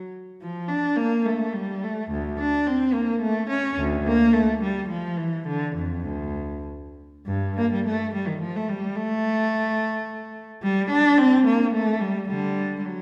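In a flowing 3/4 with rubato, hovering between 96 and 111 BPM, this short cut from a longer baroque-style suite movement sets a solemn, unaccompanied cello in D minor, turning to G minor at 7.3 seconds. The single bowed cello is rich and focused, sung with vibrato across its span from D2 to D4 and placed up front. Around it, a wet recital-hall reverb is heard from further back in the room.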